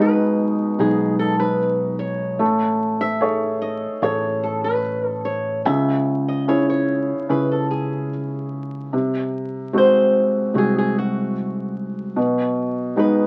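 Heartbroken and intimate, this short folk passage, cut from a longer piece, moves at an unhurried 74 BPM in a straight 4/4 in C# minor. A fingerpicked flamenco guitar carries the melody up front, its boxy acoustic tone sitting between F#4 and E5. Beneath it, a felt-muted upright piano supplies soft, mellow accompaniment, its thin felt and audible action noise lending a close, hushed character. A fingered electric bass, punchy and direct from the amp, holds the low end between A1 and C#2. The harmony drifts from B6 through Amaj7 and C#m to G#7/B#, returning to B6 at 12.2 seconds. Moderate studio reverb surrounds the parts, and the whole is coloured like a very old 78 rpm record, with vinyl crackle running throughout.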